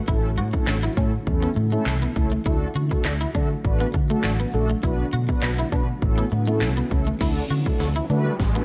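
Upbeat and euphoric, this short dance-pop clip sets a punchy house drum kit up front and a round, foam-muted vintage bass pumping up front beneath mellow, detuned synth brass, a twangy electric guitar riff at the edge of break-up and a very quiet shimmering ambient pad, all in a dark production, before a drum fill builds from 7.2 seconds and a background riser enters at 7.9 seconds.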